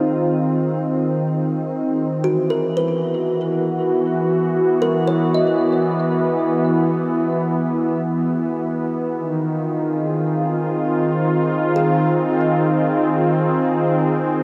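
A detuned analog pad sits up front in this serene, luminous ambient piece in free time, holding smooth, softly attacked chords that move from Ab6 to Eadd9 and back through lush chorus and shimmer reverb, while a woody, ringing kalimba enters at 2.2 seconds with tape-echoed arpeggios that fade out by 13.8 seconds, the two set inside a huge 8.0-second reverb and the warbling pitch drift of worn cassette tape in this cut from a longer piece.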